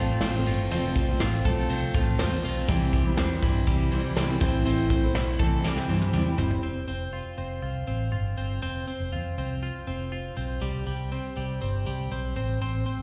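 A twangy, compressed twelve-string electric guitar spins bright arpeggios through spring reverb and tape echo across this youthful, jangly indie pop excerpt at 121 BPM, over a dark, round, foam-muted fingered bass, while a full-bodied jumbo acoustic guitar and an up-front soft brush kit with a punchy kick carry the opening until a drum fill from 5.6 seconds leads to both dropping out at 6.6 seconds, all heard as a live gig through a venue PA with recital-hall reverb over changes among F, C and A minor.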